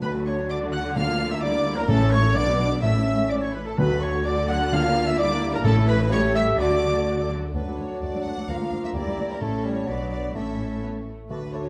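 A rich, vibrato-laden violin section carries the melody of this quick, spirited and graceful classical-period movement in D major at 128 BPM in 2/4, while a second violin section, airy flutes, a clear clarinet and a distant oboe weave second lines above very quiet violas. French horns hold warm sustained chords and mellow trumpets add stabs until 7.3 s, as dark double basses and background cellos anchor the bass beneath round, soft-mallet timpani that drop out at 6.1 s and return at 8.5 s. A roomy bassoon joins the accompaniment at 7.6 s, and the stone room reverb gives the movement a dark sheen in this passage cut from a longer piece.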